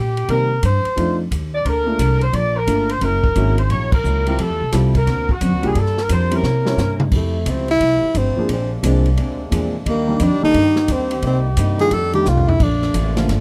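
Brassy and joyful, this excerpt of big band swing moves at 175 BPM in F major, opening with a mellow, vibrato-rich saxophone section carrying the melody over woody pizzicato upright bass, an airy drum kit with a punchy kick, intimate concert grand piano with audible action noise, and a boxy picked archtop guitar in the background from 1.6 seconds. A band accent lands at 3.9 seconds, and after a drum fill the saxophone section gives way at 7.1 seconds to a close-miked tenor saxophone solo while a dark trombone section sustains soft chords behind it. The dry, close 1970s-style studio sound keeps the bass and soloist up front.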